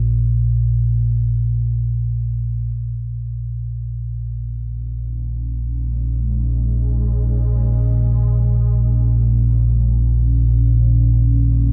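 A deep, rumbling drone sits up front from the start of this ominous, vast dark ambient excerpt in free time, tuned to A4 = 437 Hz, and a detuned, warbling analog synth pad with subtle chorus joins it, fading in from 2.8 s on a Bb minor chord, all bathed in a cathedral-like reverb.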